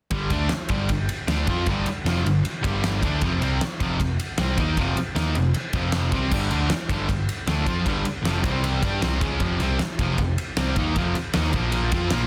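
Hard rock in G minor at 155 BPM, this short menacing, heavy cut from a longer piece drives in a straight 4/4 from start to finish. Three overdriven, picked electric guitars share the riff from 0.1 to 12.3 seconds, sitting in the background of the mix: a bright cranked stack guitar, a bright double-tracked distorted guitar, and a sludgy one with a warmer tone. Beneath them an overdriven picked electric bass growls with a punchy, amped edge, while a huge arena drum kit sits up front with a fat snare, punchy kick, crash and ride cymbals, and an airy, polished big-room sound. The riff moves between G and F power chords, touches C, then returns to G and F before closing on Bb at 11.5 seconds. Light reverb and small room ambience surround a dense, heavily limited modern master.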